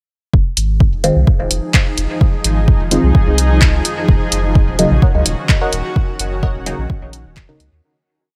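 The kick drum and a round, soft dub sub bass open this hazy, cavernous dub techno piece at 128 BPM in F phrygian, joined by tape-warm clapped backbeats and closed hats with dub echo, muted detuned chord stabs through a phaser, and at 1.3 seconds a blurred granular cloud pad, with the bass, stabs and pad pumping over Fm7 moving to Ebm7, while a crisp wavetable stab enters briefly at 5.0 seconds, just before the fade-out that begins at 5.3 seconds.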